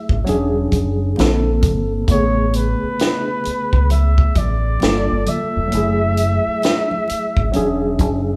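A breathy, whispered flugelhorn carries the melody with mellow vibrato and a soft attack in this soulful, smooth neo-soul and R&B piece, cut from a longer work. Beneath it, a worn, slightly out-of-tune tine electric piano with light overdrive moves through chords such as E13, Bbmaj9, Amaj9 and Gm9, while a dark, round fingered bass and a compact cocktail kit with a high-tuned snare and punchy kick sit up front on a swung 16th feel. Thick-skinned congas struck with hard hands stay in the background, and the band sounds live together in one large studio room with moderate reverb.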